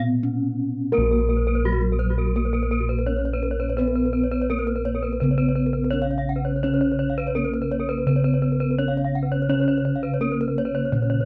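Ringing bronze tones shimmer through a light reverb in this brilliant Balinese gamelan excerpt in Bb pelog at 84 BPM, where up-front bossed gongs carry a dark, round, beating bass beneath a mellow, padded-mallet metallophone melody and a very quiet, airy metallophone accompaniment. After a brief opening, two more metallophones enter with arpeggios at 0.9 and 1.0 seconds, one struck with a horn mallet for a bright edge and the other with a wooden mallet. The paired tuning makes each metallophone line throb with beating shimmer.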